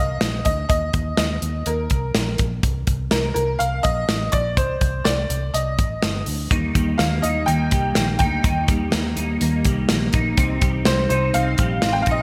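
A bright, slightly detuned upright piano carries the melody up front with a touch of delay, over a dark, foam-muted electric bass, and a punchy modern drum kit with gated reverb on its kick, snare and hi-hat joins at 0.2 seconds. This breezy, jangly indie pop fragment of a longer piece moves at a straight 124 BPM in 4/4, turning between Cm and Eb. At 6.5 seconds a full-bodied picked steel-string acoustic guitar with analog chorus settles in the background, and a twangy, compressed twelve-string electric guitar adds clean arpeggios through ensemble chorus, all set in a lush hall with bright 1980s-style digital production.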